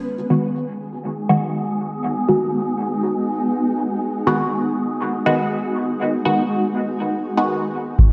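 A deep, hazy dub techno fragment opens on a cloudy, detuned granular pad holding a G#m7 chord and muted sawtooth chord stabs colored by phaser and dub echo, both pumping to the sidechain, with an airy, breathy wind-like noise texture drifting in quietly at 0.8 seconds inside a lush hall, before a dry, tape-warm kick and a barely audible sine sub bass arrive at 8.0 seconds as the cut ends.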